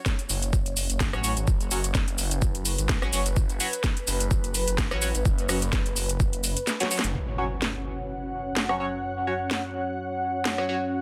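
Swung 16ths drive this bouncy, swaggering bass house cut at 127 BPM in 4/4, where a knocking, tape-toned kick and a garage kit of cracking snare, metallic hats, rim click and shaker sit up front over a swirling, saturated detuned saw bass with phaser, while nasal, band-passed chord stabs with a moving notch and dub echo flicker above an ethereal, airy pad with ensemble chorus. After the kick ends at 6.3 seconds and a drum fill, an electronic impact and an evolving, bright resonant pad with a filter sweep arrive at 7.1 seconds.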